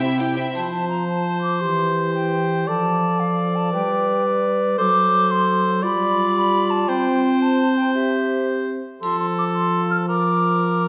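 A hollow, pure-toned silver concert flute carries a second line high above the texture for the whole of this excerpt from a heroic, adventurous film score in F major, moving in a 12/8 lilt at 113 BPM. In the opening moment a rich, focused violin section sounds the melody over a very quiet second violin line and a lush viola accompaniment in the background, before the strings give way within the first 0.6 seconds. From there a mellow, close-miked French horn section sits up front with sustained chords. A dark, vintage-toned solo clarinet and a warm solo cor anglais, the latter also up front, weave their own second lines beneath the flute. The harmony moves from F through C/E, Dm/F and G to D7/F#, G7 and a long Csus4 before returning to F at 9.0 seconds, where a bright triangle chimes again after its first touch at the horns' entry. A wet scoring-stage reverb gives the ensemble a spacious, rounded sound with a soft upper edge.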